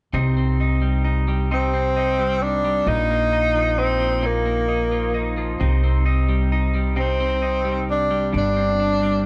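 A twelve-string electric guitar and a pizzicato upright bass open this aching, melancholic pop fragment at 0.1 s, moving slowly at 44 BPM in a straight 6/8 in C minor. The guitar is clean, twangy and compressed, its picked accompaniment running through spring reverb. The bass sits up front with a woody, thumpy tone from its steel strings. At 1.5 s a clear tenor saxophone takes the solo melody in a jazz style, with vibrato, a soft attack and scooped notes, and an analog delay adds a roomy echo. The harmony moves from Cm to Bbsus4, back to Cm and then to Gsus4, all inside a small room with light reverb, before the recording cuts off at 9.3 s.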